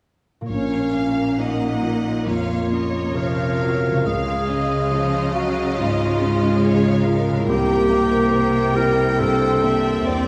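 Cinematic, emotional film score for orchestra in Bb minor, bittersweet and moving, flowing at a rubato 69 BPM as a short cut from a longer piece, with harmony moving from Bb minor to Db and then C7. A very quiet, ringing concert harp arpeggio begins at 0.4 s, and from 0.5 s a rich, smooth violin section carries the vibrato melody while a clear, more distant violin section and an up-front, warm solo clarinet trace second lines. Beneath them a dark, mellow grand piano with audible action noise and long sustain accompanies alongside a background viola section, and a lush cello section holds the bass, all set back in a wet scoring-stage reverb.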